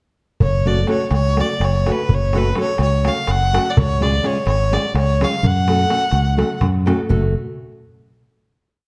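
Bittersweet and restless, this short Balkan folk piece has the lively drive of a Balkan wedding band, running at 251 BPM in eighths over a straight 7/8 in F# harmonic minor. A rich, nasal fiddle carries the melody from 0.4 seconds, one bowed player up front with light vibrato, spinning a smooth, even, motif-based line built in period phrases that sits slightly boxy in tone. Beneath it, a bright, growly fingered electric bass plays punchy root-and-fifth lines on the main beats, direct and forward in the mix. A crisp metal-shell darbuka struck with hard hands drives a two-stick drum pattern with a small-room snap, while a full-bodied nylon-string guitar enters at 0.7 seconds with fingerpicked, close-voiced off-beat chords, finger squeak audible in its deep classical sound. The harmony moves from F#m to C# and back to F#m, the fiddle drops out at 6.6 seconds, and a final chord from 7.1 seconds closes the piece, all set in a moderate recital-hall reverb within a dark production.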